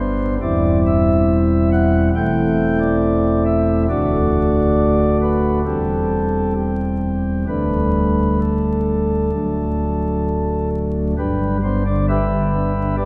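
Rubato 4/4 at 64-70 BPM carries this serene, reverent classical chorale in G major, a short cut from a longer piece for solo pipe organ on soft flute stops with a romantic voicing spanning D1 to G5, set up front yet heard from further back in a wet church reverb with vinyl crackle, as its harmony moves through C/E, Am/E, D and Dsus4 before settling on G at 11.2 s.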